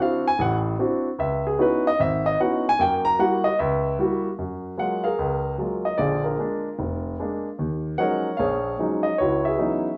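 Relaxed and warm, this solo jazz cut swings at 150 BPM in 4/4, with a lone grand piano playing throughout in a polished, present tone that spans E#1 to A#5. The harmony moves through rich extended chords such as D9, C#m11 and F#7b9, then settles into F# major at 4.4 seconds with F#maj9, A#7 and D#m11. A wet studio reverb places the sound further back in the room, and the passage is taken from a longer piece.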